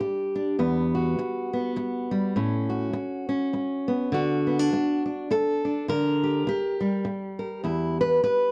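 A lilting 3/4 at 102 BPM with a gentle swing on the eighths carries this short folk fragment in D major, cut from a longer piece, where a lone fingerpicked steel-string acoustic guitar sits up front with a dark, auditorium-bodied tone. Its nostalgic, hopeful harmony moves from Emadd9 and Aadd9 into a second passage at 4.1 seconds that settles on D before shading through Gm/D to Em. The sound is wrapped in light reverb and the worn, warbling pitch drift of old cassette tape, with a faint mains hum beneath.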